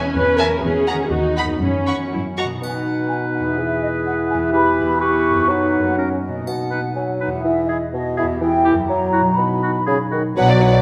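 A straight 2/4 pulse at 123 BPM drives this playful, whimsical film cue in B major, quirky and magical in mood and cut from a longer piece, with a ringing, fingerpicked concert harp playing arpeggios throughout. Strings open it, with violin sections carrying a gentle sul tasto melody and a focused second line over a woody viola section and distant cello and double bass sections, before the woodwinds take over: an airy, hollow flute section from about 2.1 seconds, then from 2.6 seconds a smooth-topped oboe and a dark clarinet joining it on second lines, a roomy bassoon, and a bright triangle sounding briefly twice. A warm French horn section enters at 9.9 seconds with sustained chords as the strings return for the final moments, all set in a wet scoring-stage reverb.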